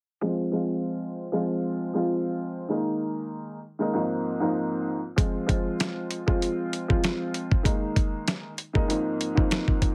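A dark, woody upright piano, worn and slightly detuned with audible action noise, carries this moody, gritty boom-bap hip-hop excerpt in F minor at 97 BPM with a 16th-note swing. The piano circles Fm, Ebsus4 and Ab6 through a cassette-tape haze and a filter sweep. A dusty, sampler-style soul kit with a thumpy kick, medium-tuned snare and hi-hat joins up front at 5.2 seconds, all under light reverb and a heavily compressed, radio-like sound.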